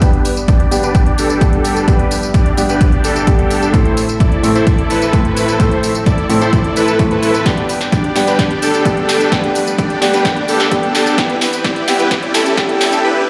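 This short cut from a longer festival progressive house track sounds like it was played through a big sound system in a bare room, with a moderate digital reverb and a large studio reverb giving it an open, echoing space. At 129 BPM in straight 4/4 and G major, the mood is anthemic and euphoric, built as a build-up that moves through G, Am, G and Em, with a filter sweep on the supersaw running throughout. Up front, a huge, thick, detuned supersaw riff with vibrato and a sub octave pumps against the sidechain through a low-pass filter and tape echo. A worn concert grand piano with deep bass and short sustain plays accompaniment, also pumping and echoing, while a lush, bright supersaw pad holds very quiet sustained chords beneath. A punchy, overdriven electronic kick drives from the front, joined by a big-room kit with a punchy snare, metallic hats and tambourine, and a drum fill arrives at 7.5 seconds as a very quiet riser, in from 6.0 seconds, lifts the tension.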